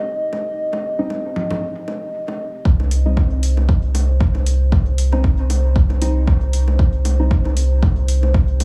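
A nasal, detuned analog pad holds a sustained C minor chord with subtle chorus and sidechain pumping from the start, joined by overdriven bongos and congas trailing dub echo and, at 1.0 s, mellow chorused and phased chord stabs, before a round sub bass and an up-front deep overdriven kick arrive at 2.7 s, with metallic hi-hats following at 2.9 s, to set a nocturnal, meditative dub techno groove at 116 BPM with a light 16th-note swing, all in a small digital room.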